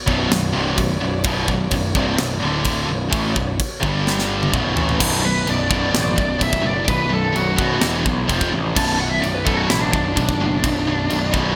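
Heavy metal in B minor at 128 BPM, aggressive and relentless, this clip from a longer piece opens with a lush, bowed symphonic string section holding sustained chords in the background, its vibrato and portamento adding expressive sweep until it falls away at 5.0 seconds. Underneath, a double-tracked high-gain rhythm guitar sits up front with a bright edge, doubled on the same riff by a thick fuzz guitar further back, while a growly, overdriven electric bass anchors the low end. The acoustic drum kit is tight and polished, with a tight kick, a medium-tuned snare, bright china and crash cymbals, and toms, all given a big, airy gated reverb. A drum fill from 4.1 seconds leads into a solo at 5.3 seconds, where a distorted, high-gain lead guitar with delay takes the melody above the riff. The harmony moves mostly around B minor, passing through D, G, E and F power chords, and the whole track carries a bright, 1980s-style digital production with a light small-room ambience.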